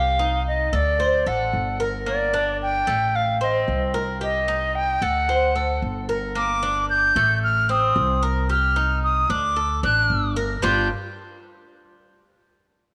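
A moderate plate reverb with a 3.1-second tail casts a glossy sheen over this short cut from a longer Cuban son and guajira piece, set in G minor at 112 BPM in a straight 4/4. The mood is sultry and danceable, with a breathy, bright silver concert flute carrying the melody up front, its tongued notes shaded by vibrato and a slightly reedy edge, reaching from D5 up to G6. Beneath it, a mellow Cuban tres spins picked arpeggios on its metallic double strings, some doubled at the octave. A woody, growly upright bass, plucked pizzicato and placed close, anchors the low end between G1 and D2. All three parts play together from the start until 10.9 seconds, moving through a cycle of Cm, D7, Gm and Adim that turns to a plain D before landing on a G5 chord at 10.6 seconds.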